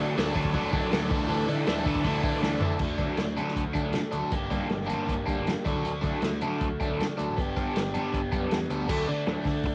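Two compressed, overdriven electric guitars open this upbeat, jangly indie rock excerpt at 158 BPM in D major, one riff colored by phaser and the other by lush chorus, alongside a bright, growling picked bass in the background and a very quiet, buzzy combo organ with heavy vibrato holding sustained chords. A muffled, lo-fi vintage drum kit with dark cymbals and a tight kick enters at 0.2 s and plays a fill before the organ drops out at 2.8 s, with the organ returning at 8.9 s, all within a lightly reverberant home cassette recording.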